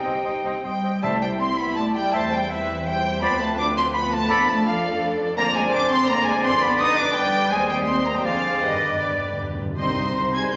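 Classical, a stormy and restless romantic movement for symphony orchestra in 3/4 with rubato, cut from a longer piece, in which a lush violin section with vibrato carries the melody up front over a very quiet second violin line, an airy flute, a distant oboe, a clear clarinet and a roomy bassoon, while intense violas, expressive cellos and even double basses play alongside mellow French horns, dark trombones enter at 1.0 s, soft-mallet timpani in the background play a fill from 8.6 s, and a tuba with light vibrato arrives at 9.8 s, all within a reverberant recital hall.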